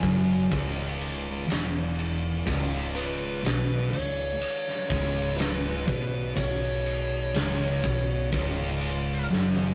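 A dark, distorted fuzz guitar riff dominates this heavy, brooding stoner and doom metal excerpt in C# minor at a slow 61 BPM, doubled by a second, very quiet fuzz guitar and anchored by a woody, thumpy pizzicato upright bass with tube saturation. A warm, picked fuzz lead guitar carries the melody until 9.3 s, while a very quiet, gritty tonewheel organ holds sustained chords through a slow rotary speaker. An up-front rock kit with a punchy kick, ride and toms closes with a drum fill from 9.3 s, all captured in a rough rehearsal-room recording with moderate reverb.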